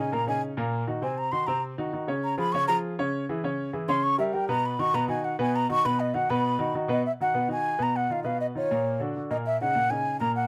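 Close, detailed microphones and light reverb place a breathy concert flute and a natural-sounding grand piano up front in this fiery, sultry jazz passage, cut from a longer piece and set in a straight four-beat feel. The flute carries the melody with vibrato, crisp attacks and rolled-off highs, playing an expressive solo through the first 7.0 seconds over the piano's warm accompaniment. At 7.0 seconds the music moves into a new section, with richer chords that include a major ninth sharp eleventh and an augmented sonority.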